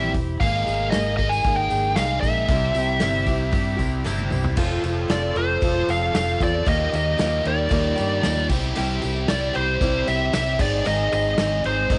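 Light reverb and studio ambience frame this jangly, open-road slice of folk and heartland rock, where a biting, overdriven lead guitar sits up front carrying the melody over a shimmering, octave-doubled twelve-string acoustic with audible finger squeak. A crunchy, double-tracked electric guitar plays a riff through a phaser, while a dark, round fingered bass and a punchy small-room country drum kit hold down the groove, joined at 0.6 seconds by a jingly, very quiet tambourine. A drum fill at 4.1 seconds leads into the second section, where the chords move from F through Ebadd9 and C to Ab.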